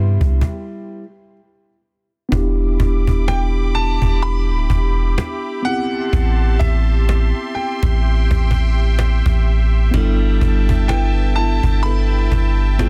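A moody, sensual contemporary R&B excerpt at 63 BPM in E minor opens on Cmaj7: a clear concert grand piano carries the melody through digital delay over a mellow tine electric piano, a smooth, detuned sawtooth pad with chorus, fingerpicked nylon-string guitar arpeggios and a deep, round 808-style bass up front, with a snappy, close cajon entering just after. After a stop from 0.4 to 2.3 s, the swung 16th-note groove moves through Em7, Am7 and G69, and the bright, boxy guitar returns with its delayed arpeggios at 9.9 s. The dense, heavily limited mix sits dry.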